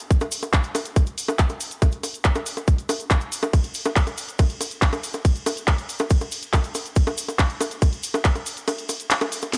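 Trance at 140 BPM in a straight 4/4, intense and psychedelic, this short cut is driven by a tight, up-front electronic kick drum that plays from 0.1 seconds and drops out at 8.7 seconds, alongside a layered drum kit of bongos, handclaps, hi-hat, ride cymbal and a cracking snare in a small room ambience, while a grainy, mellow acoustic cabasa sits in the background of a dry mix.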